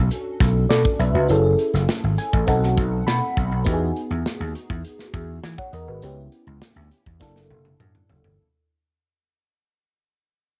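Captured in a small room on cassette, this short excerpt of polished 1980s jazz-funk pop fades out across its length, carrying a nocturnal, bittersweet mood at 101 BPM in a straight 4/4. Up front, a lush, dreamy FM electric piano with a soft pad layer, treated with phaser and analog chorus, moves through rich chords from Bm9 to F#7alt and adds a fill between 1.9 and 3.7 seconds, while a punchy, amped vintage slap bass anchors the harmony. A modern acoustic studio kit with a tight kick and medium-tuned snare keeps time on hi-hat, kick, snare and toms, closing with a drum fill from 7.2 seconds.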